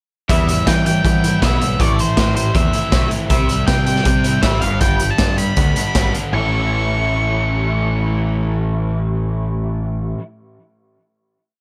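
A dry, close-sounding indie rock piece at 158 BPM in 4/4, bittersweet and moody, opens at 0.3 s with a gritty, saturated garage drum kit playing an indie four groove up front in a small, pumping room, while a growling, overdriven picked bass stays locked to the kick. A bright, crunchy guitar picks arpeggios over Em, Am, C and G, a dark, compressed overdriven guitar with ensemble chorus chugs palm-muted eighth notes, and an octave-fuzz lead guitar carves out hook-phrase motifs on top. The drums drop out at 6.2 s, and the guitars and bass ring out on a final A chord from 6.3 s.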